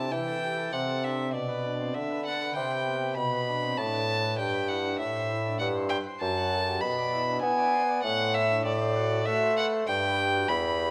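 A single period-style violin leads this radiant, dance-like baroque sonata movement, its gut-string tone reedy and lightly touched with vibrato as it sings the melody between D5 and B5, bowed and set up front. Beneath it, a solo bassoon carries the bass line with a warm, classical-style sound and its own gentle vibrato, also close and present. A pipe organ's principal chorus fills out the continuo with full, baroque-voiced harmony spread from the low register up into the treble, sitting a little behind the two soloists. All three parts play together across the whole 10.9 seconds of this excerpt cut from a longer piece, moving in triple metre with a flexible, rubato pulse. The harmony travels through a chain of minor chords and dominant sevenths before settling home on G at 9.9 seconds, all wrapped in the generous, wet reverb of a recital hall.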